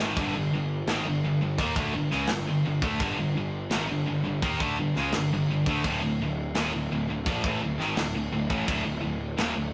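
A rough rehearsal-room recording with warm saturation and a moderate stone-room reverb frames this aggressive, heavy metal excerpt at 84 BPM in straight 4/4, moving from G5 to Dm at 5.8 seconds. An up-front, bright overdriven electric guitar carries the riff, thickened by a very quiet high-gain distorted guitar and a double-tracked fuzz guitar, while a punchy, fuzzed and overdriven electric bass drives underneath. A tight, gritty metal drum kit with a mid-forward sound and rolled-off top opens with a fill, then hits crash, kick and snare throughout.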